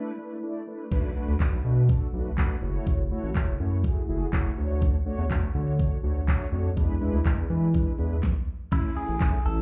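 The recording sounds muffled, as if heard through a wall from inside a club, with a dry, EQ-shaped character. This upbeat, summery dance-pop excerpt in a straight 4/4 opens with mellow synth brass alone on an E7sus4 chord: a dark, detuned sawtooth tone with chorus, vibrato and a filter sweep, pumping against the sidechain. At 0.9 seconds a round analog bass and a pop drum kit enter together and sit up front. The bass is deep, blending square and sine waves with a fast attack, and the electronic, layered kit brings a knocking kick, a fat snare, crisp hi-hats, handclaps and a crash cymbal. The harmony moves through Bm7, F#m7, Dmaj7 and E7 before a brief stop at 8.2 seconds, and at 8.7 seconds a clean, compressed, direct-recorded electric guitar with phaser picks a short melody as the music arrives on A.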